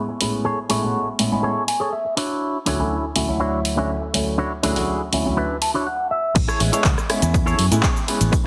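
Heavily compressed and radio-like with a plate-reverb shimmer, this joyful, feel-good filtered disco house fragment at 122 BPM in A major sets a dark, clean envelope-filtered electric guitar riff and clean fills at 1.4 and 5.4 seconds over an intimate concert grand piano, gritty with vintage 12-bit sampler texture, phaser and sidechain pumping, moving from Amaj7 to Dmaj9 alongside a punchy, tape-warm analog drum machine of hi-hat, handclaps, rim click, cabasa and crash, until the drop at 6.4 seconds brings in an up-front fingered electric bass, a punchy electronic kick and a very quiet tambourine as the harmony returns to Amaj7.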